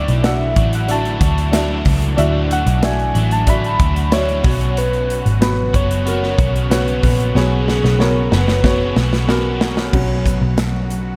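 Piano-driven pop with an uplifting, hopeful mood, cut from a longer piece and moving in a straight, steady stride over a Dadd9 that shifts to Bsus2. A worn, woody upright piano with a slightly detuned, short-sustained tone carries the accompaniment, while a gentle, round FM synth lead sings the melody with a keys-like, decaying attack, touched with chorus, vibrato and delay. A crunchy, double-tracked overdriven guitar plays a picked riff, and a dark, bowed string section holds soft sul tasto chords in the background. Up front, a foam-muted, amped electric bass gives a round low end beside a punchy acoustic kit with bright cymbals, hi-hat, snare and crash, which rolls into a drum fill at 7.3 seconds. The synth melody drops out at 9.3 seconds, and from 9.9 seconds the upright piano steps forward for a brief solo, all set in a light studio reverb.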